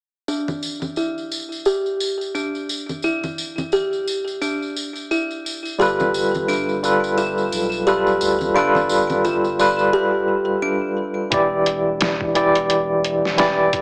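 Heard through a small-speaker sound and a moderate echo chamber reverb, this cinematic, smoky trip hop excerpt moves at 87 BPM in 4/4, with a light swing on the sixteenths, in E phrygian. A delicate, tinkling music box opens on arpeggios up front, shaped by a low-pass filter sweep and digital delay, while bright, close tambourine and congas play alongside. At 5.8 seconds a barky, lightly overdriven tine electric piano with tremolo steps forward through a combo amp, and a deep, round analog bass sits dark in the background as the harmony moves from Em7 to G9. After a short break, a gritty, pitched-down sampler-style drum kit arrives at 11.3 seconds with a thumpy kick, medium-tuned snare and hi-hat, compressed and tape-tinged, as the chords return to Em7.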